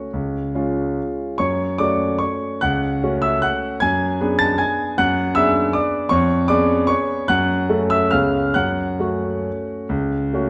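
A warm concert grand piano carries this short classical waltz on its own, placed up front with a deep bass and a natural tone that spans from C#2 to A6. Set in F# minor and 3/4 time, the elegant, wistful excerpt moves with a rubato feel, its tempo drifting between 129 and 163 BPM. The harmony circles around the home chord, passing through a half-diminished colour and a dominant seventh before settling back on F# minor near 8.6 seconds. A moderate recital hall reverb lends the instrument a sense of space. Over it all lies the character of a worn cassette tape, whose warbly pitch drift gives the sound an aged, wavering quality. The fragment, lifted from a longer work, lasts about 10.5 seconds.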